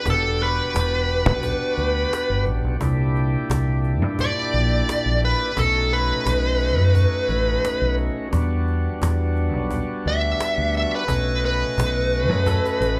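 A straight-eighth soul blues groove in 4/4 moves at an unhurried 87 BPM, with a snappy, dry cajon with snares sitting close and a round, dark fingered electric bass holding the low end up front. Over this, a bright, smooth overdriven lead guitar carries the melody in E dorian, giving the brooding, smoky mood its voice. Behind it, a thick, gritty tonewheel organ fills out the harmony with audible key click and a slow rotary speaker, moving through Em9, C7 and B7 before returning to Em9 and ending on B7. At 12.5 seconds the cajon plays a fill, and a slightly broken-up, lo-fi, compressed second guitar enters briefly on a single note through a small old amp until the cut at 13 seconds. The band plays live in one room with a moderate large studio reverb and a faint mains hum beneath, and this passage is cut from a longer piece.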